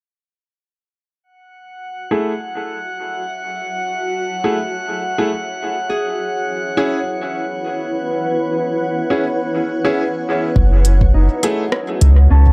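At 103 BPM in 4/4 with a light 16th-note swing, this meditative ambient dub excerpt in F# dorian opens with a glassy, chorused shimmer of drifting overtones from 1.6 seconds, while a dark, blurred granular pad fades in beneath it and a bright, woody upright piano with audible action noise stabs out up front through a low-pass filter and dub echo. Fingerpicked, ringing Celtic harp arpeggios join at 5.9 seconds, passing through a low-pass filter and tape echo, as the chords move from F#m7 to E6 and back. At 10.6 seconds a round, deep sub bass arrives up front with a soft, overdriven electronic kick in the background, followed by overdriven hi-hats and rim clicks treated with dub echo, all set in a lightly reverberant, echo-heavy mix.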